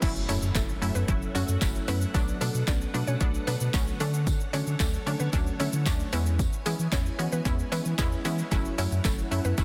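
A punchy analog drum machine drives a straight 4/4 at 113 BPM, its up-front kick, handclaps, hi-hat, shaker and crash joined by a jingly tambourine, while a very quiet electronic impact hits from 0.2 to 2.1 seconds at the start of this driving, bittersweet dance-pop drop in F# minor. A thick, saturated sub bass and a bright, detuned sawtooth unison pluck pump against the sidechain beneath silky vintage string-machine chords treated with phaser and ensemble chorus, moving through F#m7, Bm7, Dmaj7 and C#m7/E. From 0.3 seconds a woody, round FM mallet-like pluck carries the melody with chorus, set back in a dense, heavily limited modern mix with light reverb.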